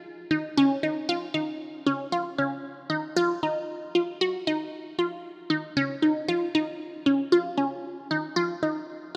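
Set in an even, straight 5/4, this driving, intricate progressive instrumental excerpt features a lone resonant blip pluck playing solo from 0.0 to 9.0 seconds, moving between Db4 and Gb4. The synth is squelchy and detuned, with a snappy filter pluck, a sub octave beneath it and a phaser colouring its bright, up-front tone. A moderate plate reverb gives the rough home-demo mix a lingering tail.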